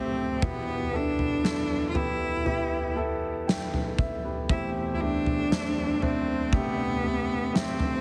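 A melancholic pop ballad in A minor, this short excerpt from a longer piece moves at a slow 59 BPM in a straight 4/4, carrying an emotional weight from its opening moments. A solo bowed cello sings the melody between B3 and F4 with a biting, intense tone and expressive vibrato, sitting up front in the mix. Beneath it, a concert grand piano provides the accompaniment across a broad span from E2 to G5, its deep bass, long sustain and audible action noise giving it an intimate, polished presence. At 0.4 seconds a huge arena drum kit enters with a punchy kick, medium-tuned snare and toms, its acoustic sound carried by a pumping hall ambience. The harmony shifts from Em to Am7/E at 4.5 seconds, all set in light reverb and small room ambience with a heavily compressed, radio-ready finish.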